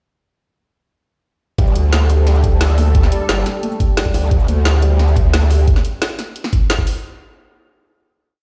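A dark, futuristic drum and bass drop bursts in at 1.6 s with a growling, detuned bass whose wobble speed shifts up front, a knocking electronic kick, and tight, overdriven drums with a woody snare, bright hats and cabasa, while a soft felt-muted upright piano repeats a 5-step arpeggio loop that drifts against the bar through dub echo and a resonant sawtooth pad with a filter swell sits in the background, both pumping to the sidechain, until the pad and piano stop at 5.6 s and the drums carry on to 6.9 s, all heard in a bare stone room.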